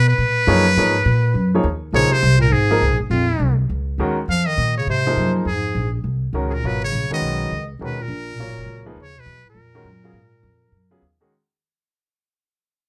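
A brisk swing in 4/4 at 204 BPM drives this searching, hypnotic modal jazz fragment, cut from a longer piece, as it moves between Abm9 and Bbm9 chords. A buzzy, metal-muted trumpet carries the melody with vibrato and scooped notes over a woody pizzicato upright bass, while a clear baby grand piano with audible action noise comps from 0.5 s. A mellow bass clarinet adds a second line from 1.9 s, as the whole passage begins fading out, with plate reverb on the trumpet and a light room reverb.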